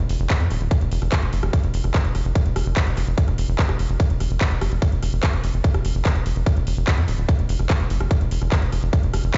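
A tight, punchy sawtooth-and-square sequencer bass opens this hypnotic psychedelic trance excerpt with fast-attack filter plucks up front, soon joined by a garage drum kit of handclaps, metallic hi-hats and rim clicks, and at 0.3 seconds by a layered, up-front electronic kick, both drum parts in studio reverb, while a digital ambience sounds as if played on a big sound system in a bare stone room, its top end dulled.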